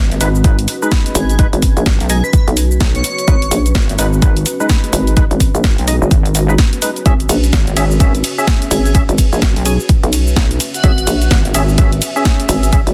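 Aggressive and bouncy, this bass house excerpt in G# minor runs at 127 BPM with a swung 16th-note feel, built on a punchy, up-front electronic kick, a house kit with a cracking snare, hi-hat, ride, and shaker, and a heavy, saturated pluck wobble bass that pulses under sidechain pumping with chorus and overdrive. A hollow, knocking FM bass joins at 1.2 seconds, while percussive, organ-like stabs with ensemble chorus and tape echo punctuate the groove over a deep, moody ambient pad sitting in the background, the harmony moving from G#m to C#m/G# at 7.1 seconds. An airy, dreamy lead with phaser, vibrato, and tape echo floats in twice, at 1.2 and 8.7 seconds, all within a dense, heavily limited modern master with little reverb.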